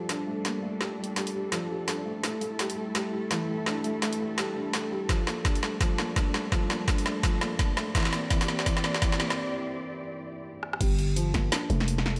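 Spacious and cinematic, this short half-time drum and bass excerpt at 168 BPM in G dorian opens with a veiled, con sordino cello section holding distant bowed chords with pumping sidechain and a soft felt-muted upright piano arpeggiating through a low-pass filter sweep and delay, its action noise audible, while an overdriven, up-front kit of woody snare, bright hats, rim clicks and crash builds with fills, a knocking electronic kick joins at 5.1 s, and after a break the drop at 10.8 s brings a growling, buzzy 808-style bass over an echo-chamber reverb.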